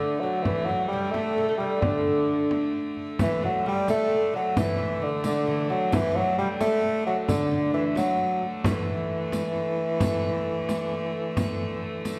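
In a straight 6/8 at 88 dotted-quarter beats per minute, this festive, rustic medieval dance in D major unfolds as a brief portion cut from a longer piece. The bassoon carries the melody up front with a warm, classical tone and light vibrato, while a delicate, fingerpicked lute with bright doubled nylon strings plays a second line in the background. Alongside them, a hurdy-gurdy holds an earthy drone, its wheel-bowed sound clear and biting with an airy edge. A large, deep frame drum joins at 0.5 s, played with soft hands and heard close and dry, and a compressed, saturated riq with bright jingles and hard hands enters at 3.2 s in the background. The ensemble sits further back in a recital hall whose wet reverb lingers for about 1.6 s.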